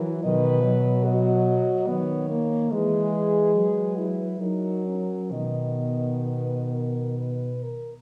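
Set in a lush recital-hall reverb, this tender, serene classical excerpt for horn quartet drifts in B major at a rubato 62-76 BPM in 3/4, with a mellow French horn singing the melody with vibrato over a second mellow horn's accompaniment, while two dark French horns, one on the bass and one carrying a second line from 0.2 s, add a shadowed depth as the harmony moves from B through E and F# back home to B.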